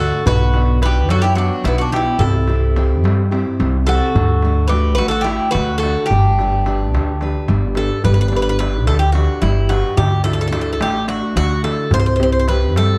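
A bright, metallic Greek bouzouki carries the melody up front over a second, warmer double-strung bouzouki line that drops out at 7.4 seconds, a full-bodied jumbo acoustic guitar with audible finger squeak, a woody, thumpy pizzicato upright bass, and a crisp, distant metal-shell darbuka played with hard hands from 0.3 seconds, in this sunny, relaxed Greek folk excerpt in G major at 216 BPM in a straight 7/8, captured with a dry, close 1970s-style small-room sound.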